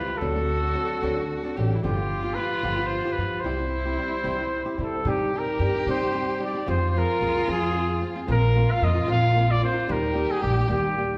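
Mexican folk in a mariachi vein, this proud, festive excerpt in 6/8 sets a vintage-toned trumpet up front, singing the melody with vibrato in a classical style, over a dark, bowed violin that carries a soft-attacked, expressive second line full of portamento beneath it. A fingerpicked flamenco guitar supplies the accompaniment while a woody pizzicato upright bass sits forward in the mix, all heard from further back in a reverberant recital hall. At 5.0 s the harmony shifts from major into minor as the piece moves into its second section.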